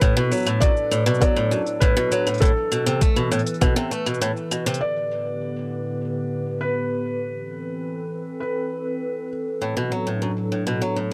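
A bright, boxy picked acoustic guitar with audible finger squeak plays swing-style arpeggios up front in this delicate, intimate folktronica excerpt at 100 BPM in A dorian, alongside a thumpy, muffled electronic kick that drops out at 3.7 seconds and a produced electronic kit of woody snare, smooth hats, shaker and claves, while a soft, felt-muted upright piano with tape echo carries the melody over a warbling, detuned, nostalgic pad of sustained chords, the guitar falling silent at 4.8 seconds and returning at 9.6 seconds in a dry, close 1970s-style studio sound.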